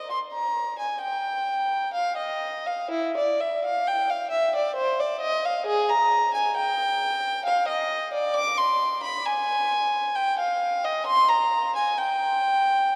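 In an unhurried 3/4 at 66 BPM, the pulse stretches and gives under a free rubato, lending this baroque-style suite movement a grave yet flowing character. A single unaccompanied violin carries everything from 0.0 to 12.9 seconds, ranging from Fb4 up to D6 in Eb major, tuned to A4 = 442 Hz. Its period-style, gut-string tone is warm and slightly reedy, colored by a light vibrato. The bowed line sits up front while a long cathedral reverb, with a 4.7-second decay, surrounds it in a resonant, spacious wash. The passage is cut from a longer piece.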